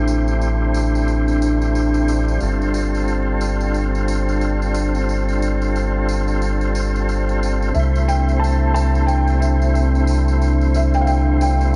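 Smoky and hypnotic, this trip hop excerpt at 90 BPM with a swung 4/4 feel layers a thick, lightly overdriven tonewheel organ with key click, fast rotary speaker and tape echo over a round, up-front dub sub bass, a deep, warbling ambient pad in the background, a breathy wind-like noise texture and a faint tambourine, moving through Am7 and G9sus4 before a felt-muted upright piano with audible action noise and 12-bit sampler grit enters at 7.7 seconds on C6, all within a dreamy, cathedral-reverb-soaked mix dusted with vinyl crackle.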